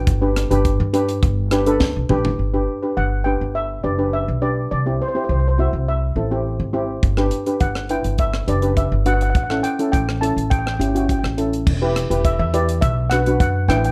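Two steel pans and an upright bass open this festive, sunny calypso fragment, with a tight funk drum kit joining almost at once, at a straight 104 BPM in G major. The lead pan carries the melody in a shimmering, mellow voice struck with soft rubber sticks, while the second pan sits up front with a smooth, dusky accompaniment beneath it. The pizzicato upright bass, strung with steel strings, has a woody, warm tone and sits prominently in the mix. The drums, with a high-tuned snare, tight kick, hi-hat, rim click, toms and crash cymbal, play a fill from 1.8 seconds and drop out at 2.4, then return at 7.0 seconds and play to the end. The harmony moves through G, Gmaj7, C, A7, Em and Bm, and a moderate studio reverb rounds out a dark, warm production.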